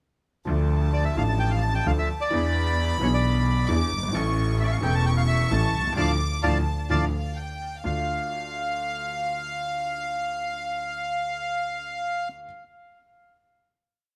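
A dry recording with little reverb captures a complete short tango in D harmonic minor at 131 BPM, passionate and dramatic with a rubato feel. The reedy bandoneon carries a motif-based melody up front while a soft-attack violin section floats a pure, sul tasto counter-melody above it. A bright, slightly detuned upright piano with audible action noise and a bowed, focused double bass both play the uneven three-and-two eighth-note tango rhythm over Dm, E7 and A, and after a band accent from 6.0 to 7.8 seconds the bass stops at 8.0 seconds while the others hold a final D minor chord to about 12.4 seconds.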